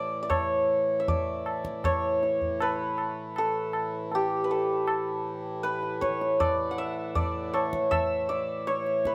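Serene and devotional, this short passage of Hindustani classical music, cut from a longer piece, unfolds at 79 BPM in a straight 4/4, set in raga Khamaj on A. The hammered santur carries the melody between G4 and F#5, sitting up front with a bright, shimmering tone whose strings ring out through a plate reverb. Beneath it, a hand-pumped harmonium holds a low drone from A2 to E3, its reedy, breathing sound close-miked and dry, mixed well below the santur. A high-tuned tabla joins at 0.3 seconds, its acoustic strokes carrying a small-room ring. The ensemble shares a moderate small room, lending the 9.1-second passage an intimate, prayerful calm.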